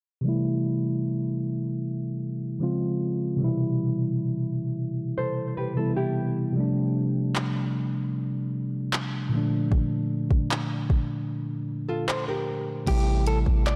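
Contemporary R&B at a sensual, longing 76 BPM in A minor, built on a mellow, low-pass-filtered tine electric piano moving through chords from Am7 to Bbmaj7 under a long filter sweep, with dark, fingerpicked nylon-string guitar arpeggios carrying audible finger squeak and tape echo, a soft electronic drum kit of kick, hi-hat, handclaps and crash arriving at 7.4 s, and, after a break at 11.3 s, a compressed, direct-recorded clean electric guitar melody and a deep, boomy 808-style bass entering together at 12.9 s, all set in light reverb with a dusky, warm production.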